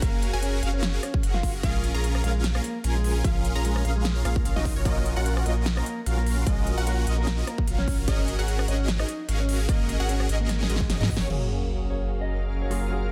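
A swung, half-time groove in 4/4 drives this euphoric, lush future bass excerpt, with a punchy electronic kick and a big-room dance kit of huge snare, crisp hats, rim clicks and crash cymbal beneath a deep, thick, saturated sub bass. Huge, bright, detuned supersaw chords treated with cassette tape and a low-pass filter, a clean, fingered electric guitar melody with tape echo, and background pluck arpeggios with delay all carry sidechain pumping alongside the bass. After a drum fill, a very quiet impact and sub drop land at 11.3 seconds, where a dark grand piano with long sustain takes up the accompaniment on F#maj9, joined at 11.9 seconds by a shimmering, ethereal pad with chorus and reverb.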